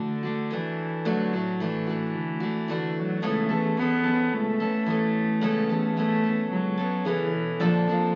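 A straight 4/4 pulse carries this peaceful, pastoral acoustic folk excerpt, played by a small band. A picked steel-string dreadnought guitar sits up front with a bright, full-bodied accompaniment. Beside it, a single bowed cello plays a floating second line sul tasto, soft in attack and smooth on top. Underneath, an overdriven tine electric piano takes the bass through a combo amp, its barky, gritty tone shimmering with fast tremolo. The harmony moves from Dadd9 to Aadd9/C#, then shifts to Bbmaj7 at 7.6 s, where a woody, double-strung mandolin briefly adds arpeggios in the background. Everything is wrapped in a wet studio reverb and heard as if from a very old 78 rpm record, with vinyl crackle and a muffled top end.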